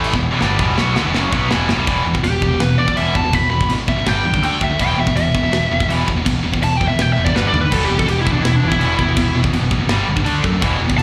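Heavy metal with a heavy, aggressive mood, this live club recording opens on a very quiet pipe organ with a brassy trumpet stop, its baroque voicing and chiff sitting faintly under the band before it drops out at 1.8 seconds and returns at 7.7 seconds. Two bright, high-gain distorted guitars carry the riff in the background, one with a scooped tone, both tinged with slapback echo, while a growling, overdriven electric bass pushes low and hard beneath them. A tight acoustic drum kit with a medium-tuned snare and tight kick works china and crash cymbals and toms, throwing in fills before the band shifts from E minor into a power-chord passage at 1.9 seconds. From 2.2 seconds a high-gain lead guitar enters up front with a solo, its warm distorted tone thickened by slapback and tape echo. The whole performance comes across as heard through a venue's PA in a small room with club reverb, and it is cut from a longer piece.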